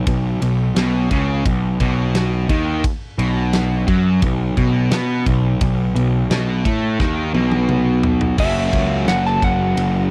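A dry, close recording with a 1970s studio feel frames this sunny, confident classic rock excerpt in B major at 87 BPM, where a growly, fuzz-driven picked bass and a dark, double-tracked overdriven guitar riff sit up front over a big rock drum kit with a fat snare and tight kick. A drum fill from 7.0 to 8.4 seconds sets up a move to F#, where a slightly broken-up electric slide guitar, played with fingerpicks, takes a short solo in its high register until the cut at 10.1 seconds.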